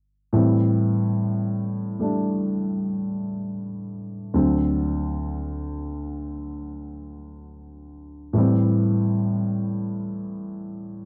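A dark, mellow grand piano plays alone and up front in this short piece of solo jazz, its natural tone kept close with a brief sustain and light reverb in a dry, 1970s-style studio sound. The mood is sophisticated and warm, with an unhurried swung feel in four as the harmony moves from Am7 to D7 at 4.3 seconds and back to Am7 at 8.3 seconds. The playing stays low to middle in register and is cut from a longer performance.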